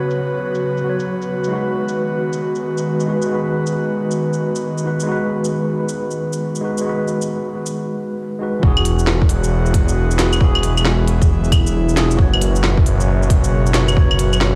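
Heard through a big sound system in a bare stone room with light reverb, this nocturnal, wistful future garage cut moves at 135 BPM in G# minor with a swung 16th feel, as a worn, slightly out-of-tune tine electric piano with overdrive, analog delay and sidechain pumping sits over an airy, breathy chorused pad, shifting from F#sus4 to G#m7. An organic electronic kit of woody snare, crisp low-passed hats, claves and shaker, re-recorded in a small room with a tape-warm tint, carries the groove until a short break at 7.7 seconds. At 8.6 seconds the harmony turns to Eadd9 as a tight, up-front electronic kick and a menacing, saturated detuned saw bass with a filter swell and pumping arrive, before F#sus4 returns at 12.2 seconds.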